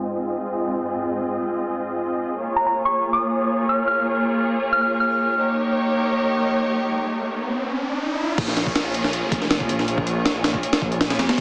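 Drum and bass with a jungle edge at 160 BPM in Bb dorian, this dark, atmospheric excerpt opens on a biting, vibrato-laden string section moving through Fm7/Ab, Bbm7 and Eb7 under a filter sweep, while a soft, warbling FM synth bell with chorus, 12-bit grit and dub echo sings a brief melody from 2.6 s. A background electronic riser builds from 6.5 s until the drop at 8.4 s, where a thick, menacing detuned saw bass and an up-front, gritty, pitched-up breakbeat kit with thumpy kick, high-tuned snare, hi-hat and crash arrive on Bbm7, all set in a lush hall reverb with a crackly, heavily compressed small-speaker radio sound.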